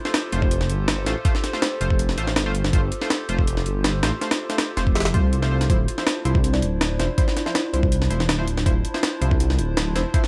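Atmospheric and raw, this drum and bass excerpt in a jungle vein runs at 162 BPM in a straight 4/4, moving from a G9sus4 chord to Dm9 at 5.7 seconds. Up front, a compressed, pitched-up sampler-style drum kit brings a thumpy kick, a medium-tuned snare and hi-hat with gritty texture and small room ambience, while a deep, rumbling detuned saw bass beats with saturated darkness beneath it. A band-passed chord stab cuts through with a nasal, bright edge and a full body, its decaying hits trailed by chorus and dub echo. In the background, a warbling tape-like pad holds nostalgic, mellow chords with slow attack, chorus, built-in reverb and vintage 12-bit sampler grit. A woody, ringing kalimba plucks a brief high melody from 0.4 to 2.1 seconds and again from 6.4 to 8.3 seconds, carried by dub echo. A layer of vinyl crackle sits over the dry overall sound, adding to the lo-fi character.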